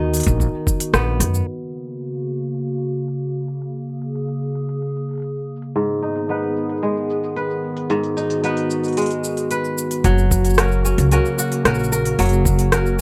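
Hopeful and delicate, this folktronica piece is cut from a longer work and rests on a warbling, nostalgic pad of mellow sustained chords with chorus, under a bright, ringing fingerpicked kora whose arpeggios carry a gritty vintage 12-bit sampler texture and delay. A crisp-hatted, tape-warm electronic kit of hi-hat, rim click and shaker, recorded in a small room, runs throughout, with a filter sweep on the drums through the middle stretch over a B, F#, G#m, F# progression. A woody pizzicato upright bass and a muffled, pitched-down kick sound briefly at the start, then return together at 10.0 s.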